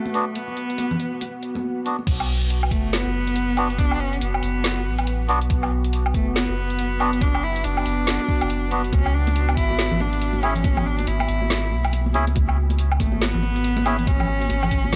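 A clear, smoothly bowed cello carries the melody through this brooding, dark deep dubstep passage in B dorian at 140 BPM, its light vibrato roughened by vintage 12-bit sampler grit and dub echo. It sits over a deep, detuned pad of sustained chords with chorus and reverb, while a reedy, nasal melodica plays filtered stabs and a faint wind-like noise texture drifts through the opening 2.1 seconds. At the drop at 2.1 seconds a round, soft sub bass and a knocking electronic kick arrive beneath a swung, half-time garage kit with a woody snare and metallic hats, with background congas returning at 8.9 seconds, all coloured by a gritty hardware and cassette tape sound.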